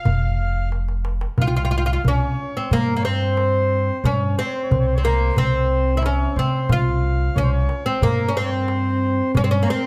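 Light reverb colors this longing, soulful excerpt of Arabic maqam ensemble music in C hijaz at 90 BPM in a straight 4/4, where a bright, woody, plectrum-plucked fretless oud up front carries the melody over a reedy, dark accordion second line, a distant, lush bowed violin section with vibrato heard only until 0.7 seconds, a thumpy pizzicato upright bass, and a clay-shell darbuka in the background that plays a fill from 0.7 to 1.4 seconds before the second section begins.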